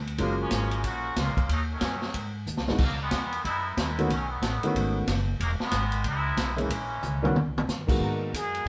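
A muted trombone section carries this dramatic, sultry big band swing excerpt, its straight-muted tone nasal and brilliant with a light vibrato and soft attack as it takes a solo over the first 8.0 seconds. Underneath, a woody upright piano with short sustain comps through rich, shadowy harmonies that move from F#maj9 through altered dominants toward a G#m9 resolution. A growly pizzicato upright bass on steel strings holds down the low end while a punchy, up-front drum kit swings hard on ride and hi-hat, dropping in short fills around 2.5 and 7.0 seconds. Near the close, a bright trombone section slips in softly behind with sustained chords, and a forceful plunger-muted trumpet bursts forward at 8.4 seconds with a wah-wah bite. The band sounds as if playing live in one studio room, with light reverb and a vintage, slightly dark top end.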